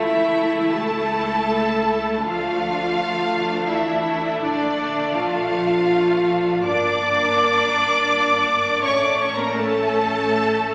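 Rubato pulls at the uneven beats of this slow 3/4 movement for string orchestra, which moves at around 82 BPM in a solemn, elegiac classical mood, tuned to A4 = 442 Hz. Up front, the first violins carry the melody between D5 and D6 with warm, expressive vibrato, soft attacks and a smooth top, while a second violin line sits further back, focused and distant. The violas, also up front, supply an even accompaniment between D4 and D5. Beneath them, the cellos sit in the background and the double basses add a rich, bowed foundation from G1 to D2. All five sections play together for the full 10.7 seconds, moving through A/C#, Dm, Bbmaj7, Gm and back to A, in a passage cut from a longer piece and set in a wet scoring-stage reverb with a 1.9-second decay.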